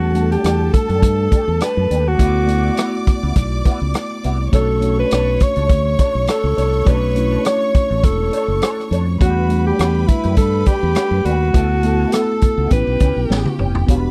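A dry, close studio sound with a small room around it frames this smooth, silky stretch of lush 1970s-style soul, swung lightly on the sixteenths. Up front, an alto saxophone with vibrato and a smooth top carries the melody, while a growly, bright fingered electric bass and a punchy vintage drum kit with a rolled-off top drive underneath, the drums closing on a fill at 13.3 seconds. A worn, slightly out-of-tune tine electric piano plays mellow accompaniment, a bowed string section adds a lush, focused second line, and a clean electric guitar with wah plays a riff in the background over chords moving from Em11 through D69 and Bm9 to A9.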